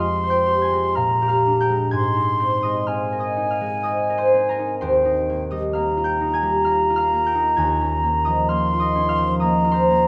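Classical impressionist duo for flute and harp, a mysterious, wistful excerpt in rubato 3/4 at 57-66 BPM tuned to A4 = 439 Hz, where an airy, straight-toned concert flute with a soft attack carries the melody between G5 and C6 over fingerpicked, ringing concert harp spanning Eb2 to Ab6, the harmony drifting from Fmadd9 through Bb13 and Abadd9 to Eb69 and Db69/Eb inside the 1.8-second bloom of a wet recital hall.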